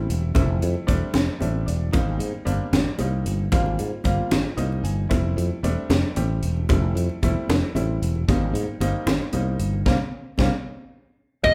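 A live, one-room sound with moderate large studio reverb frames this slick, soaring electric jazz fusion excerpt in 6/8 at 76 BPM in F major, where a growly, sustaining fretless bass sits up front beside a crisp, polished fusion kit with a high-tuned snare and punchy kick, a brilliant baby grand piano adds short fills over Fmaj9 and Abmaj9 chords, ringing congas played with hard hands sit in the background, the band hits accents from 9.9 seconds under a drum fill at 10.7 seconds, and a dark, overdriven lead guitar enters on a single Eb5 at 11.4 seconds.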